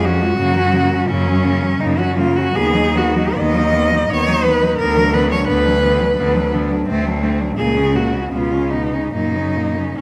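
In a flexible, rubato three-time feel, this serene, lyrical classical passage for cello ensemble is cut from a longer piece and unfolds over four bowed cellos, each sung with vibrato by a single player. Up front, a rich, focused cello carries the melody with a smooth top, and a clear bass cello sits underneath. A distant second line, expressive with portamento, and an even, close accompaniment fill out the middle, all bathed in the lingering reverb of a recital hall.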